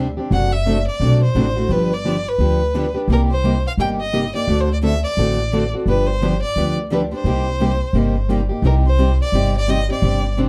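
A dark, lightly reverberant excerpt of fiery, swinging jazz manouche, where a clear, smooth bowed violin with vibrato carries the melody up front over a woody, thumpy pizzicato upright bass on gut strings, a warm plugged-in steel-string parlour guitar picking the accompaniment, and a bright, boxy second steel-string guitar further back with fresh strings and audible finger squeak, the harmony cycling through D7/F#, G7 and Cm7 before settling on Cm at 8.6 seconds.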